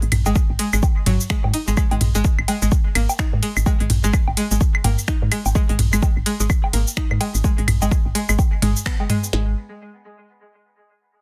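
Overdriven drums, a deep kick and a tiny snare up front, enter at 0.4 s on a swung 127 BPM 4/4 groove, while clicky, overdriven hi-hat, ride, cabasa and finger snaps tick beneath, and tape-toned electronic toms, claves and woodblock scatter through a delay. This is clinical, sparse minimal techno: a woody, round, dark FM bass pumps against the sidechain, and a twangy, string-like resonator pluck riff with a bright filter sweep, chorus and dub echo also pumps with the sidechain. The dry, dense, heavily limited mix holds a drop through 9.3 s, with a band accent at 8.9 s, in a short cut from a longer piece.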